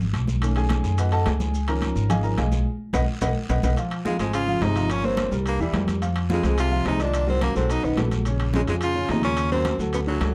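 A brisk, straight 4/4 Afro-Cuban jazz groove drives this danceable, sophisticated cut from a longer piece. Woody, growly pizzicato upright bass sits up front, while high-tuned congas with a thick skin sit in the background, ringing metal-shell timbales add a vintage, band-limited snap, and raspy guiro and grainy maracas fill in the background with a similar vintage, band-limited flavor. A concert grand piano enters almost at once and carries the opening passage with intimate tone, deep bass and audible action noise, over harmony that moves through extended chords such as Dbadd9 and Cb7. A band accent and a drum fill lead into the next section at 3.8 seconds, where a lush Dbmaj9 opens a richer progression. At 4.1 seconds the edgy, forceful tenor saxophone takes the lead with punchy vibrato and a touch of plate reverb, while a breathy baritone saxophone with a smooth top traces a lower second line beneath it. 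A small room and a dark production give the whole performance a close, cozy feel.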